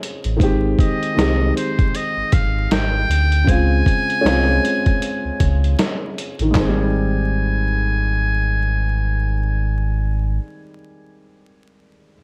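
Cosy and nostalgic, this lo-fi hip hop excerpt drifts along with a gentle swung groove in 4/4. A dark, woody upright piano carries the accompaniment, its vintage tone softened by cassette tape character and a low-pass filter as it moves between Abmaj7 and Dbmaj7 chords. Underneath, a deep sine sub bass with an added octave sits up front with a fast attack and full sustain. A compressed, sampler-style drum kit, muffled and tape-toned, mixes a thumpy kick, a medium-tuned snare, hi-hat and handclaps, re-recorded in a large room, before it drops out at 6.8 seconds. From 0.8 seconds a trumpet with a metal mute takes the melody in a buzzy, thin jazz style, filtered and trailed by tape echo, and it stops with the bass at 10.4 seconds, leaving the piano alone over a bed of vinyl crackle in a dry, close sound.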